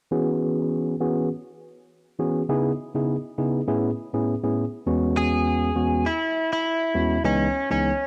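A home cassette recording with light reverb and a digital ambience gives this short cut from a longer afrobeats piece a soft, tape-worn glow. At 101 BPM in 4/4 with a gentle 16th-note swing, the mood is breezy and joyful, set in E major with the tuning sitting slightly under standard at A4 = 437 Hz. A warm, clean tine electric piano sits up front from the start, playing the accompaniment through a low-pass filter with a filter sweep across the opening section, as the harmony moves from E6 to C#m7 and Amaj7 before returning to E6. At 5.2 seconds a direct-recorded clean electric guitar takes the melody, its picked tone bright, twangy and scooped, compressed and shimmering with analog chorus. The electric piano drops out at 7.9 seconds, leaving the guitar's line to close the passage over the final C#m7.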